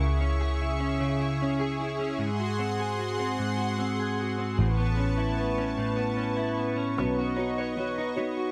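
Melancholic and aching, this short slice of a six-eight pop ballad unfolds in a slow, straight lilt. A clean, compressed electric guitar, recorded direct and double-tracked, sits up front with picked accompaniment, while a lush, detuned sawtooth pad holds bright, thick sustained chords, its soft attack and long release softened further by chorus. Underneath, a vintage foam-muted electric bass adds a dark, round low end. At 7.0 seconds a full-bodied, fingerpicked jumbo acoustic guitar joins with arpeggios, just as the harmony, having moved from C#m through G#7 and Aadd9, arrives on Badd9. The sound is dry and close, like a 1970s studio, with only a light touch of reverb.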